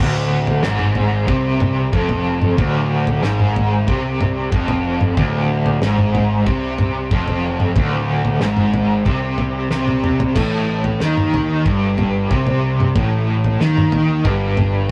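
An up-front, double-tracked overdriven electric guitar with tremolo drives a low riff through this hazy, kaleidoscopic psychedelic rock excerpt at 93 BPM in 4/4, over a punchy fuzz picked electric bass sitting in the background and a damped 70s drum kit with dark cymbals, fat snare and tight kick that enters at 0.5 seconds and plays a fill from 9.7 to 10.4 seconds, as the harmony moves from Dm7b5 to Am7b5/G, all captured as a rough rehearsal-room recording with tube saturation and short booth ambience.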